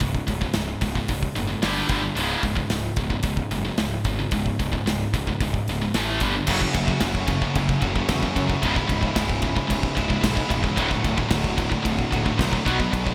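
Relentless and aggressive, this heavy metal excerpt drives forward at 112 BPM in a straight 4/4, centred on C# phrygian. From the start, two guitars churn out riffs in the background, one high-gain and distorted, the other sludgy and overdriven, while a growly, fuzz-laden picked bass sits beneath them. The big rock drum kit stands up front, with a punchy kick, a medium-tuned snare, hi-hat and bright crash cymbals ringing through. At 6.5 seconds a double-tracked, overdriven guitar joins the riffing and reaches higher than the others, as the harmony moves through F#m, C#m and D. A lush hall reverb and a small room sound frame the mix, giving it a bright, 1980s-style digital sheen.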